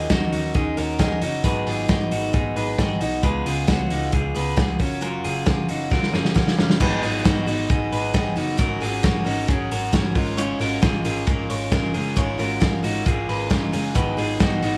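Twangy, slightly broken-up arpeggios from an electric guitar through a small old amp, touched with slapback echo, ring over a picked steel-string acoustic guitar that sits up front in this restless, bittersweet slice of jangly indie pop at 134 BPM in G# dorian. A vintage drum kit with a punchy kick, medium-tuned snare and dark cymbals plays a straight 4/4 beat alongside a round, foam-muted picked electric bass. A drum fill from 5.9 to 6.8 seconds leads into a new passage, where chords like G#m7, F#add9/G# and A#m7 unfold in light reverb.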